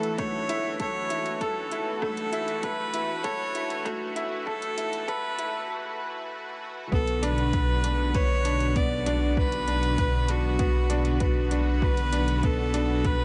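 A close, up-front solo viola carries the melody in this cinematic, hypnotic piano-and-strings electronica excerpt, its biting, earthy tone colored by light vibrato and an airy bow. Beneath it, a woody, slightly detuned upright piano with a worn character repeats a short-sustained riff through a delay, while a lush, warbling vintage unison pad holds thick chorused chords that pump with sidechain, and a filter sweep on an analog synth pad runs through the opening build-up. A deep, rumbling detuned saw bass sits on a single low note, its beating tone also pumping and trimmed by a high-pass filter. Overdriven electronic drums round out the groove: metallic hi-hats from the start, with a punchy, layered kick joining at 0.2 seconds. The build-up pauses for a short break at 5.7 seconds before the drop lands at 6.9 seconds, where the harmony settles from F#m7/B onto Bm. Light small-room reverb and a dark, filtered production give the whole a hazy, intimate sheen.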